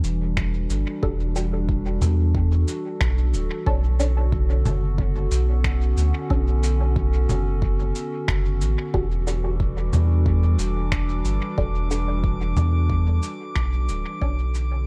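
A round analog bass sits up front in this meditative ambient dub excerpt, its deep, dark sine-and-triangle tone shaped by a filter sweep and holding low between D1 and E2. At 91 BPM in a straight 4/4 in E dorian, a warbling, nostalgic pad carries sustained chords through Em11 and Bm9, its detuned, lo-fi sound softened by chorus and built-in reverb. An overdriven electronic kick drum sits in the background, while muffled, pitched-down cabasa, finger snaps and congas add a compressed, tape-warm pulse treated with dub echo. A muted, full-bodied chord stab with a filter pluck enters at 1.0 seconds, colored by phaser, analog chorus and dub echo. At 9.8 seconds a calm, glassy texture of drifting overtones appears high on D6, and the spacious, echo-heavy mix begins fading out at 12.5 seconds.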